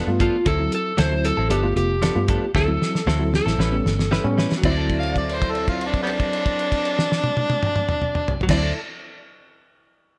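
Light reverb and a touch of studio ambience frame this gritty, soulful straight-eighth soul blues, cut from a longer piece and built on a cloth-damped, thuddy drum kit with a fat snare and dark cymbals, and a round, foam-muted vintage fingered bass. A reedy, worn electric piano with tremolo plays the accompaniment, a bright, direct-recorded clean guitar adds compressed stabs, and a slightly broken-up electric slide guitar carries the melody over D9, G9 and A9 chords, with a drum fill from 2.5 seconds. A held note sustains from 4.6 seconds, and at 5.0 seconds an overdriven, up-front harmonica enters as a second line, full of vibrato, tongue slaps and scooped notes.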